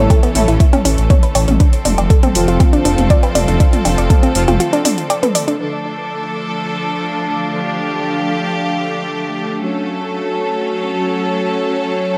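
Dark and hypnotic, this melodic techno excerpt in straight 4/4 opens with a deep, up-front electronic kick, a techno kit of metallic hats, toms and woodblock, a rumbling detuned saw bass, and a woody, nasal wave-folded pluck playing arpeggios with chorus and tape echo, all under biting, distant symphonic strings and mellow analog brass stabs in the background, before a break at 4.6 seconds gives way at 5.6 seconds to strings and brass alone, joined at 6.7 seconds by a warbling, nostalgic lo-fi pad, as the chords move from A and F to Dm and F#m in light reverb.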